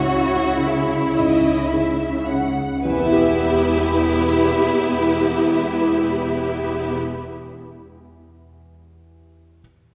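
Moving and longing, this cinematic passage in triple metre flows with rubato and eases back over its opening seconds, shifting from C#m to Em at 2.9 s. An up-front, rich violin section carries a second line with portamento and expressive vibrato, while a smooth, even violin section sings the melody from the background. A focused viola section, soft-attack cellos and woody double basses fill out the lush ensemble, and a clear grand piano with deep bass accompanies them, playing alone from 7.0 s to 9.6 s in a wet church reverb as this fragment of a longer piece closes.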